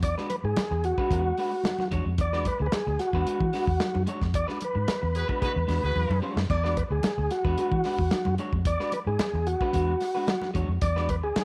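A mellow, lightly overdriven tonewheel organ carries the melody through a fast rotary speaker and slapback echo over a round, foam-muted fingered bass, a dry, dark soul drum kit, a slightly broken-up picked guitar, quiet ringing congas and a brief clear horn line at 5.2 seconds, all riding an energetic funk groove on an E9 chord with a band accent from about 4.3 seconds and a drum fill at 6 seconds in this small-room excerpt from a longer piece.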